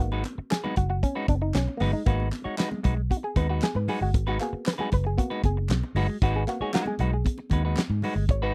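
A dark, clean semi-hollow guitar, a stringy, overdriven auto-wah clav taking a solo over one unchanging chord, and a round, punchy, foam-muted fingered bass open this sly, hypnotic funk excerpt together, soon joined by very quiet bright congas, crisp group handclaps in the background and an up-front damped 70s drum kit with a fat snare and tight kick, all in a dry, close 1970s-style studio sound.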